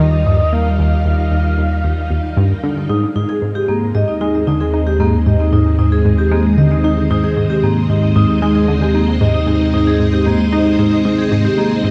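A straight 4/4 pulse comes from a tight, driving, detuned sequenced synth riff with phaser and delay, anchoring this cosmic, luminous fragment of ambient space music over a nasal, evolving analog drone bass and lush, vintage string-machine chords, while a breathy, flute-like synth lead sings briefly until 2.4 s and a metallic, ringing vibraphone takes up delayed arpeggios from 2.9 s, inside a dark production with light digital reverb.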